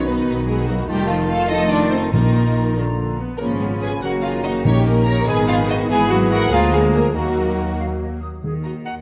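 A restless, stormy excerpt from a quick classical-period movement for symphony orchestra in Eb minor, moving in 6/8 at 95 BPM, with a background chamber violin section carrying the melody over a close, expressive studio violin section, a clear solo clarinet and a distant, airy flute section on second lines. A mellow bassoon, a portamento-inflected viola section and a very quiet, soft-attack French horn section fill in the harmony, while a dark cello section and a full-bodied double bass section anchor the bass. Hard-mallet timpani, close and dry, strike from 2.1 to 5.2 seconds and again at 8.4 seconds, all set in a moderate scoring-stage reverb as the chords travel from B through F7 and Bbsus4 to settle on Ebm.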